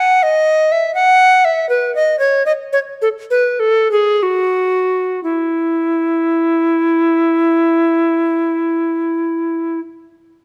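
A bright tenor recorder carries this brief classical piece alone, a baroque-style fantasia with a flowing, serene mood, cut from a longer work. Its tone is woody and pure, with vibrato and tongued notes whose chiff is clearly audible through the close, detailed microphones, which place the instrument up front. The line moves in 6/8 with free, expressive rubato, ranging from E4 to F#5. The pace slows from 0.9 to 5.2 seconds, where the opening phrase gives way to a second idea that runs nearly to the end at 9.8 seconds. A moderate recital hall reverb gives each note a natural sense of space.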